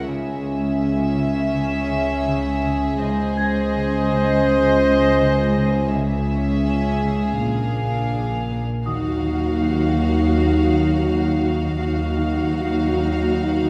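A soft, hall-washed string sound opens this mysterious, eerie cinematic passage, cut from a longer piece and set at 82 BPM in a straight 4/4, carried by the generous reverb of a church or concert hall. Two violin sections, one singing the melody and one a second line beneath it, play sul tasto with a pure, floating tone, while a dark, intimate viola section and a close, shadowy cello section fill the accompaniment and bass with light vibrato. In the background, a double bass section bowed sul tasto deepens the low end alongside a sustained analog drone built from sawtooth and pulse waves with chorus, and a thumb-plucked concert harp rings out a riff. A delicate, bell-like celesta adds a sweet, mellow texture high above the ensemble. The harmony moves from C# minor toward an A#7 before shifting to Eb minor at 8.9 seconds, where a French horn section enters in the background with soft-edged sustained chords until the close at 13.7 seconds.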